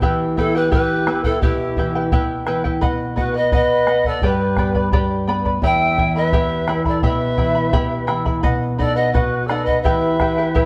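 Melancholic yet festive, this short Andean folk excerpt in E minor moves at 86 BPM in a straight 2/4, with a bright, airy bamboo pan flute carrying the melody from 0.4 seconds over a distant, end-blown wooden quena second line, while a shimmering fingerpicked charango, a dark, up-front nylon-string guitar with audible finger squeak, and a deep, dry bombo drive the accompaniment, all played live in one room with a stone-like reverb.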